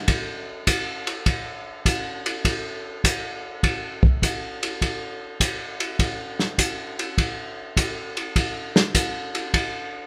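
A light reverb and a live, single-room sound frame this short cut from a longer jazz piece, a swinging, soulful groove at 102 BPM in 4/4 with a strong swing on the eighth notes. An acoustic soul drum kit carries it alone from 0.1 to 9.7 seconds, sitting up front with dark cymbals, a tight kick, a medium-tuned snare, hi-hat and ride, all heard through a rolled-off top and a pumping room sound. The opening section repeats at 6.0 seconds.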